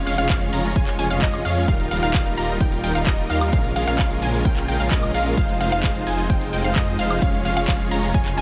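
Festival progressive house with an anthemic, euphoric lift, this short excerpt stacks huge, airy supersaw chords playing a riff over a lush, slow-attack unison pad in the background and a thick, beating detuned saw bass with a menacing edge, all pumping against the sidechain, while a bright unison pluck with a filter sweep spins delayed arpeggios up high. A house kit of handclaps, bright hats, ride, shaker and woodblock in a small room enters at 0.1 seconds, joined by a punchy, overdriven electronic kick up front from 0.3 seconds, and a barely audible downlifter runs until 1.7 seconds. The harmony moves from Db/F through Ebadd9, Bbm7 and Fm7 before returning to Db/F, all under light reverb.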